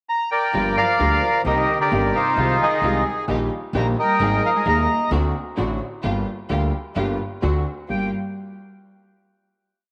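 Dramatic and sultry, this short, complete tango moves with a rubato feel in four. A reedy, vintage bandoneon carries the motif-based melody up front in sentence-like phrases, beginning with a brief pickup at 0.1 seconds. At 0.5 seconds the concert grand piano with its deep bass, a lush, intimate studio string section playing bowed sul tasto stabs, and a woody pizzicato upright bass with steel strings all take up a marcato tango rhythm in four. A single bowed cello joins at 0.8 seconds as a distant second line in the background, expressive with vibrato, portamento and octave doubling. The bandoneon and cello fall away at 5.1 seconds and return for the closing Gm7 chord, which follows a turn through D7. A wet spring reverb lends the whole piece a resonant air.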